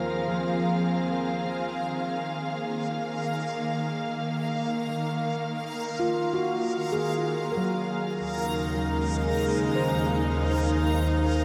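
A dark string section sits up front in this serene, reflective ambient piece at 76 BPM, its intimate bowed chords played sul tasto with a soft attack and light vibrato, moving from Fm7/Eb to Ebm at 1.9 seconds and Dbmaj7/Eb at 8.2 seconds. A ringing stainless-steel handpan adds meditative arpeggios with sharp finger strokes through tape echo, while a reversed, granular synth texture, detuned, dreamy and bright, fades in across the whole passage. A wet shimmer reverb with a 7.2-second tail washes over this excerpt, which is cut from a longer piece.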